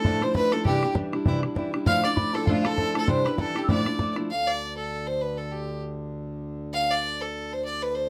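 A driving Celtic reel at 198 BPM in 4/4, with the eighth notes swung, it moves in D dorian with a dark, lively mood and sounds cut from a longer piece. A rich, biting fiddle carries the melody throughout, nasal and earthy in tone, while a fingerpicked steel-string acoustic guitar sits up front with a boxy parlour sound and audible finger squeaks, alternating between Dmadd9 and Cadd9 chords. In the background, a round, double-strung mandolin and a mellow, hollow mid whistle with crisp chiff and vibrato add second lines, and a boomy, open bodhran keeps the beat close and dry. Just after 4 s the mandolin, whistle and bodhran drop away, the guitar follows at 4.3 s, and a reedy, breathing pedal harmonium enters with a low drone beneath the fiddle as the chords give way. The recording has close, detailed microphones in a moderate small room.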